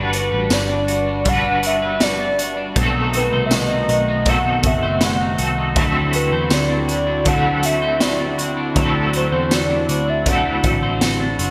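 A velvety, detuned sawtooth synth lead carries the melody from 0.1 s, its smooth, mellow tone colored with vibrato, chorus and digital delay, in this blissful, dreamy dream pop excerpt cut from a longer piece. Beneath it, a gritty, saturated garage drum kit sits up front with a punchy kick, a high-tuned snare, hi-hat and tambourine, its pumping small-room sound treated with gated reverb. A twangy, slightly broken-up electric guitar picks arpeggios through lush chorus and digital delay, while a bright, clean electric guitar adds accompaniment shimmering with tremolo and ensemble chorus. A dark, round, foam-muted picked bass anchors the low end, and a hollow, airy, flute-like pad with a slow attack holds sustained chords in the background. The harmony moves from Gmaj7 to B7b9 at 2.8 s and D9 at 5.8 s, all bathed in a lush hall reverb with bright 1980s-style digital production.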